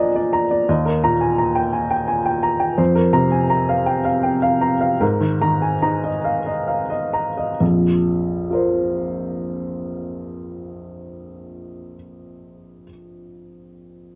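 A clear upright piano opens alone on a Bbadd9 chord, setting a hopeful, tender tone in this short passage of neoclassical minimalist piano cut from a longer piece. Played in 3/4 with a rubato feel, the tempo moves between 62 and 86 BPM, slowing from 1.7 to 7.6 seconds as the harmony passes through Eb, Fsus4 and Absus2. At 7.6 seconds a second section begins on Bbsus2, and the piano carries on through to 14.2 seconds across a range from Bb1 to Bb5. The instrument sits up front with an intimate, woody character, long sustain and audible action noise that lend it a natural presence. A moderate stone-room reverb surrounds the playing, and the tuning rests slightly low at A4 = 438 Hz.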